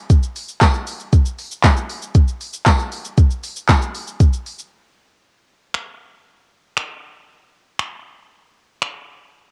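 An up-front electronic R&B drum kit of soft kick, fat snare, smooth hi-hats, finger snaps, handclaps and shaker, tape-warm from cassette, drives this bittersweet yet energetic pop excerpt at 117 BPM in straight 4/4, with a jingly, vintage, band-limited acoustic tambourine tucked in the background from 0.6 to 3.8 seconds, a brief break at 4.7 seconds before a new section, and light reverb with digital ambience giving the home-recorded sound a faint sense of space.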